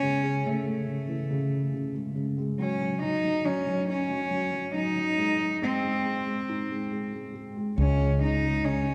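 A church's long, wet reverb surrounds this short, melancholic and intimate acoustic folk-pop ballad, cut from a longer piece and moving in a slow three. A single bowed cello carries the melody from the start, its tone rich and pure with a soft attack and a floating, sul tasto quality that sits up front yet seems to drift from afar. Beside it, a felt-muted upright piano plays the accompaniment, mellow and dark through thick felt, with the soft clicks of its action audible close by. The harmony moves from Amaj7/C# through F#5 and G# to C#5. Only at 7.8 seconds does a fretless electric bass enter, round, punchy and hollow-bodied, adding a low C#2 under the final chord before the passage ends at 8.9 seconds.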